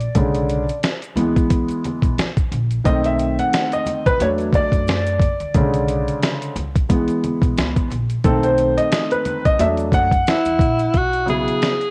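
Jazz-hop at 89 BPM with a swung 16th feel in B dorian, nocturnal and smoky, where an intimate concert grand piano with audible action noise takes the lead over a gritty, compressed sampler-style kit with a thumpy kick and fat snare, a woody pizzicato upright bass, and ringing maracas and congas kept in the background, until a breathy, whispered alto saxophone with vibrato and analog delay enters at 10.3 s, the piano, drums and sax all coloured by cassette tape in a small room with moderate spring reverb.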